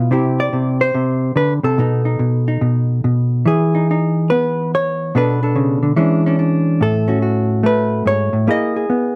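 Solo jazz for hollow-body jazz guitar, swinging at 143 BPM in 4/4 with a sophisticated, warm mood, in a short excerpt cut from a longer piece. The electric guitar is dark and clean, fingered rather than picked, and sits up front with a compressed, even tone, ranging from G#2 to D#5. Its harmony opens on C and B7 before settling into E major at 3.5 s, where the second section begins. From there it moves through Emaj7, Bm7, E6 and A69, closing on a rich Emaj7#11/A# at 8.5 s. A light reverb gives the instrument a touch of space, and the tuning sits slightly below standard pitch.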